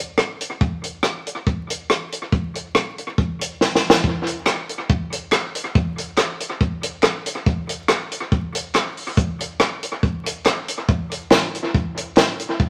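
A lightly swung ska beat in 4/4 drives this energetic excerpt, carried by a compact cocktail drum kit that sits up front from 0.2 seconds. The kit sounds acoustic and dry, with a high-tuned snare, a tight kick, hi-hat and rim click, all treated with an analog delay. A short drum fill at 3.6 seconds pushes the groove into the next section. From 4.5 seconds a group handclap joins in the background, human and crisp yet compressed and saturated, also colored by analog delay. The whole performance sits in a wet studio reverb with a faint layer of vinyl crackle, and it is cut from a longer piece.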